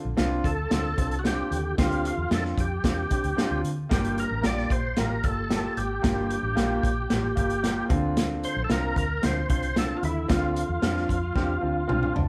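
Urgent and driving, this uptempo 1960s-style soul passage in straight 4/4 sounds like a band playing together in one room, lightly touched by reverb. An overdriven tonewheel organ carries the melody up front, its thick, gritty tone marked by key click, percussive third-harmonic attack, chorus vibrato and a slow rotary speaker. Underneath, a grand piano accompanies with an intimate, natural sound in which the action noise can be heard. A vintage muted fingered electric bass gives round, foam-muted, amped low end. The breakbeat drum kit enters at 0.2 seconds and sits forward with a saturated, crunchy character: a tight kick, a medium-tuned snare, hi-hat and toms, all with a rolled-off top. The harmony moves from Dm7 to Gm7 and back to Dm7, and at 11.4 seconds the drums and piano both break into fills just before the cut from the longer piece.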